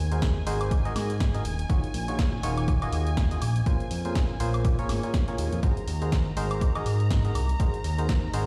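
Euphoric and feel-good, this short cut from a longer piano house track rolls along in 4/4 with a light swing on the sixteenths. A biting FM electric piano carries the riff, its percussive, fast-attack notes decaying under a chorus shimmer and tape echo. Beneath it, a fat, detuned sawtooth bass with a plucky filter sits up front and sidechain-pumps alongside a punchy, tape-warm electronic kick. A punchy analog drum machine supplies hi-hat, snare and woodblock, while a dark, woody violin section, bowed sul tasto with vibrato, holds lush, distant chords high above, also pulsing with the sidechain. The chords move from Ab9 to Ebm11, Bbm9 and back to Ab9, and the mix is dry yet sounds as if played on a big system in a bare stone room.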